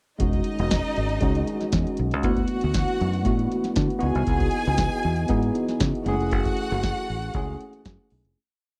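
Disco with a glamorous, danceable mood, built on an analog drum machine's four-on-the-floor beat of deep kick, punchy snare and metallic sixteenth-note hats, alongside a foam-muted fingered bass line that syncopates with chromatic approach notes. A worn, slightly out-of-tune tine electric piano, lightly overdriven, pushes rootless chords with grace notes, while a lush violin section plays fast runs into held, vibrato-rich notes over a dark, smooth-topped French horn pad sitting in the background. The chords move from Emaj13 through D69 and C#m11 to F#m9 in a dry, close 1970s-style sound, and the whole piece fades out from 6.3 seconds.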